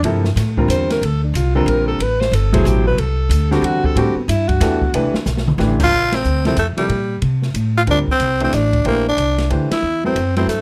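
A growling tenor saxophone takes the melody from 5.8 seconds, raspy and gritty with scooped notes and a light vibrato, sitting up front in this short cut from a longer modal jazz piece in G dorian. Before it, a breathy alto saxophone carries a whispered, intimate solo line from 0.7 to 4.9 seconds, its soft attack and vibrato giving the opening a spiritual, hypnotic air. Underneath, a clear concert grand piano comps on Gm11 and Am11 chords with a natural tone and deep bass, while a woody, pizzicato upright bass on steel strings stays close and prominent. An open jazz drum kit, dark and smooth with a boomy kick and a medium-tuned snare in a small room, swings the 3/4 time at 184 BPM, adding a fill just before the second section begins around 5.9 seconds. The band hits accents at 6.1 and 9.7 seconds, and light reverb gives the whole ensemble a gentle sense of space.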